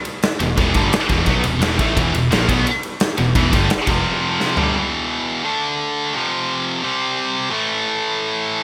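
A driving, straight four-four pulse from a big rock drum kit pushes this relentless, dark heavy metal clip, with punchy kick, ride, toms and a medium-tuned snare ringing in a bright stone room with gated reverb, topped by a fill at 4.4 seconds. Up front, a distorted high-gain guitar leads the riff over a double-tracked overdriven crunch guitar and a scooped high-gain guitar set in the background, while a clean, bell-like tine electric piano carries the bass line until 4.0 seconds. After 4.8 seconds the lead guitar carries on alone through shifting power chords, framed by light reverb and bright 1980s-style digital production.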